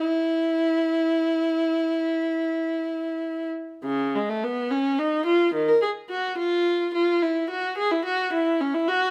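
Classical, baroque-style suite movement for unaccompanied viola, heard in a brief 9.1-second fragment cut from a longer piece, unfolding in 12/8 with a flexible, rubato feel. A single bowed viola sits up front with a rich, smooth, even tone and vibrato, its serene, radiant line ranging from C#3 to A#4. Light reverb lends the solo instrument a gentle sense of space as its opening phrase is stated and then returns at 3.9 seconds.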